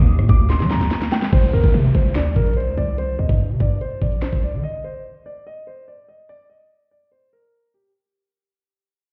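Muffled as if heard through a wall with a stony room echo, this tense, ominous half-time drill piece at 145 BPM in C minor opens on a very quiet, warbling, detuned analog pad beneath a dark, mellow vintage grand piano melody with filtered tape echo, while a punchy, saturated 808 bass and an up-front electronic drill kit of knocking kick, sharp snare, rim clicks, finger snaps and metallic hats drive below; a drum fill leads into a Csus2 chord and an electronic downlifter at 1.3 s as the track begins to fade, and the piano carries on alone from 4.6 s.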